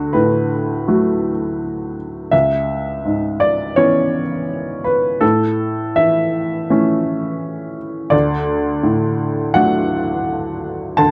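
A dry, close recording with a 1970s studio character and light reverb places a clear, woody upright piano up front, its natural tone and short sustain giving each note a plain, intimate presence. This wistful, melancholic neoclassical minimalist piece unfolds solo at 83 BPM in 4/4 with a rubato feel, the piano ranging from C#2 to A5. Cut from a longer work, the 11.1-second passage moves through D, C#m7 and A before returning to D at 8.1 seconds.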